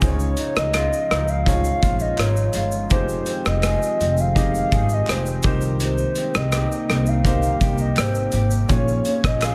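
A warbling, nostalgic lead with lush chorus and vibrato carries the melody in this wistful, lonely indie and bedroom-pop excerpt, over a punchy, up-front indie drum kit with hi-hat, rim click and shaker, a growly pizzicato upright bass, an intimate upright piano with audible action noise, a twangy, slightly broken-up electric guitar in the background, a dark, lo-fi tape-like pad entering at 1.0 seconds, and very quiet crisp handclaps from 0.7 seconds, set in small room ambience.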